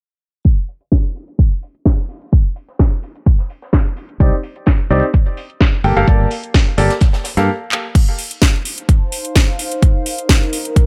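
A punchy, tape-warm electronic kick leads this joyful, uplifting piano house piece, layered with a house kit of cracking snare, metallic hats, claps and crash and a dry, high-tuned cocktail kit in the background, as a filter sweep runs and a clear baby grand piano riff with delay joins a bright fingered electric bass, both pumping, from 4.2 s until a stop at 7.5 s and a drum fill, after which a warbling, nostalgic lo-fi pad with chorus and phaser enters at 8.8 s over the kick and house kit in a small room ambience.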